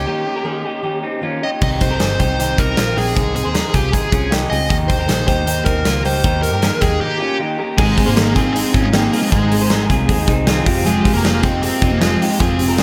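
A dark, overdriven lead guitar with slapback echo carries the melody up front in this bright, breezy jangly indie pop excerpt in Ab major at 156 BPM, over a full-bodied fingerpicked steel-string acoustic in the background, twangy lo-fi arpeggios from an electric guitar through a small old amp, also with slapback echo, and a round, foam-muted vintage electric bass. A punchy, polished rock drum kit with bright cymbals comes in at 1.6 seconds after an opening break, and a second break arrives at 7.0 seconds. At 7.8 seconds a very quiet, reedy combo organ and a mellow French horn section holding sustained chords join, all set in a lush hall reverb that gives a big arena sound.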